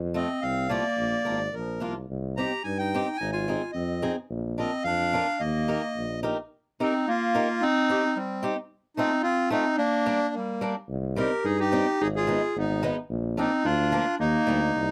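A reedy, up-front accordion carries the melody with a dry-tuned single-reed voice in this bouncy, jolly alpine folk fragment in Eb major, moving at 109 BPM in a loose, rubato 2/4. Beneath it, a punchy, present clarinet plays a classical-style second line, while a boxy, fingerpicked acoustic guitar adds swing-style accompaniment. A warm tuba with light vibrato and a roomy, distant tone holds the bass, dropping out at 6.3 seconds and returning at 10.9 seconds, all set in light reverb and captured with close, detailed microphones.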